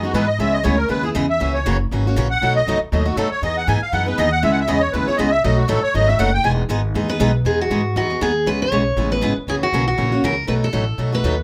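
Lively and playful, this snippet of acoustic string swing in the jazz manouche style opens with a reedy, shimmering musette accordion taking the solo up front, over a warm jumbo steel-string guitar picking out the changes and a woody, thumpy gut-string upright bass plucked pizzicato, before a bright, full-bodied dreadnought guitar enters with the melody at 7.1 seconds, all set in a small, moderately reverberant room.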